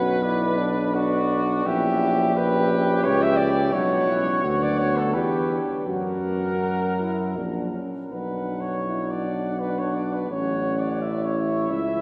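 A flugelhorn stands up front in this yearning, elegiac hymn for brass band, carrying the second line with light vibrato and a distant, roomy quality. Above it, a warm cornet sings the melody with vibrato and a soft attack, sitting lower in the mix. A clear tuba anchors the bass near the front, while a bright, close-miked trombone section and a mellow, vintage-toned solo trombone fill out the accompaniment in the background. The music moves in a flexible, rubato three-beat metre through a solemn minor progression that passes through a diminished chord before settling back. A wet cathedral reverb places the whole band further back in a resonant space, and the 12 seconds heard here are cut from a longer piece.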